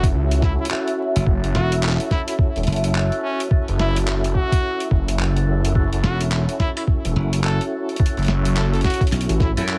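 Swung 16ths at 107 BPM drive this swaggering, playful glitch hop excerpt in F# minor on an F#m7 chord, where a gritty, pitched-down electronic kick sits up front beside a sampler-style kit of handclaps, hi-hat and tape-toned snare, a swirling, saturated phased saw bass and a growly, punchy slap bass arriving at 1.2 s carry the low end, a lightly overdriven tonewheel organ with key click, slow rotary and delay punches out pumping stabs, a clear trumpet with light vibrato and delay sings the melody, two moody, sidechain-pumped pads (one phased, one reverb-soaked) hover in the background, and vinyl crackle adds digital ambience.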